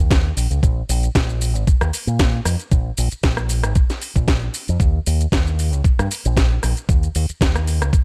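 A bright, up-front fingered electric bass with an envelope filter carries this sensual, sleek nu-disco clip in Bb minor at 115 BPM with 54% swing on the 16ths, joined from 0.1 s by a thumpy, sampler-style electronic kick and a layered, tape-warm house kit of cracking snare, metallic hi-hats, rim click and shaker, in a dry, close sound with little reverb.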